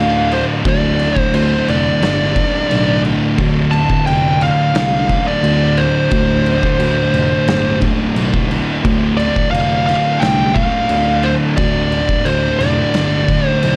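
Hypnotic and sludgy, this stoner and doom metal excerpt in D minor crawls at 88 BPM, with an up-front fuzz lead guitar singing a high melody over two dark, picked fuzz guitars grinding a low riff (one sitting in the background), a barky, overdriven tine electric piano carrying the bass through a combo amp, and an oversized low-tuned acoustic drum kit that enters at 0.3 s with a punchy kick, fat snare and dark cymbals, all set in a small room with light reverb and tape echo on the lead.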